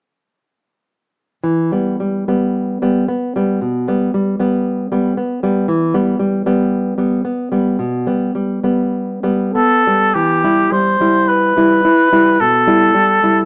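A thumb-plucked nylon-string guitar opens at 1.4 seconds with an up-front, classical accompaniment on E minor, its finger squeaks audible in a moderate stone-room reverb, before a warm oboe enters at 9.5 seconds with a yearning, melancholic melody of soft attack and light vibrato, the romantic duo drifting in a slow, rubato 4/4 through a small-speaker sound until the fragment is cut off at 13.5 seconds.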